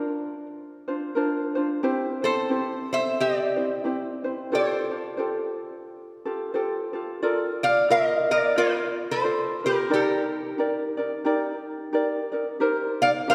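Bathed in a lush concert-hall reverb, this relaxed, languid Hawaiian excerpt features a metallic, nasal lap resonator guitar played with slide and fingerpicks carrying the melody up front over a light, fingerpicked ukulele, with a gently swung lilt that shifts to a new key at 7.2 seconds as lush major-seventh chords drift by.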